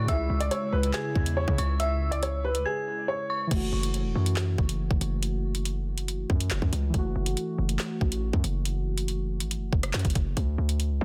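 Drill hip hop at 140 BPM in a half-time feel and F# minor, ominous and tense, where a worn, boxy dark grand piano carries the melody with delay alongside an eerie, inharmonic FM bell line and a soft, breathy pad in the background through the opening section, including a break from 2.7 seconds, until 3.5 seconds, while warbling lo-fi synth keys with chorus take a filter sweep from 3.5 seconds over a punchy, heavy 808-style bass and an up-front electronic drill kit of hard-clipped kick, woody snare, metallic hats, claps, rim clicks and crash, all in a dense, heavily limited, dry mix.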